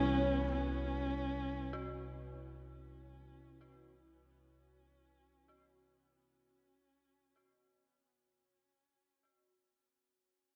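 Desolate and ominous, this slow dark ambient drone at 48 BPM opens on a Bsus2/C chord: a husky, woody horsehead fiddle bows a close melody with vibrato, portamento and tape echo over a warbling, detuned sawtooth analog drone with chorus and a deep, full-bodied pad held mellow in the background with its own reverb, as the opening fades out over 3.0 seconds, while an eerie, inharmonic FM bell with tremolo and echo arpeggiates from 1.7 s to 9.2 s, set in a wet cathedral reverb and worn, warbly cassette tape.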